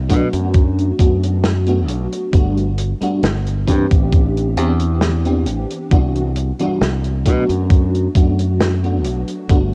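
A bright, punchy fingered electric bass opens this faded, woozy slice of vaporwave at 0.0 seconds, sitting up front with a touch of tube saturation as it moves between G1 and B2. Almost at once an FM electric piano layered with a soft pad joins in, lush and dreamy with a detuned, dark character, its fast-attack notes decaying through tremolo, ensemble chorus and analog delay. A thumpy electronic kick drum enters alongside it, sitting up front, grainy with vintage 12-bit sampler grit and re-recorded in a large room. A distant, roomy soul drum kit adds hi-hat and a medium-tuned snare with a rolled-off top, sharing the same sampler grain. At a slow, straight 67 BPM in 4/4, the harmony drifts through Bm7, Gmaj7, Am11 and Cmaj9#11 before returning to Bm7 at 7.3 seconds. The whole mix carries light reverb and the worn, warbling pitch drift of old cassette tape, lending this short fragment of a longer piece a hazy, woozy feel.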